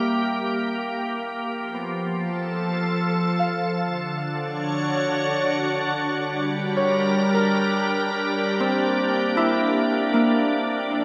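In a straight 3/4 at 78 BPM, this peaceful, serene ambient passage, cut from a longer piece and tuned to A4 = 441 Hz, sets a pure, detuned, organ-like pad up front, its bright sustained chords blurred by ensemble chorus and shimmer reverb as they move through Edim/Bb, F, Dmaj7, Gm and Bb6, while a ringing, fingerpicked Celtic harp fades in over the full 11 seconds with arpeggios trailed by delay and shimmer, all set in a dreamy mix soaked in plate reverb.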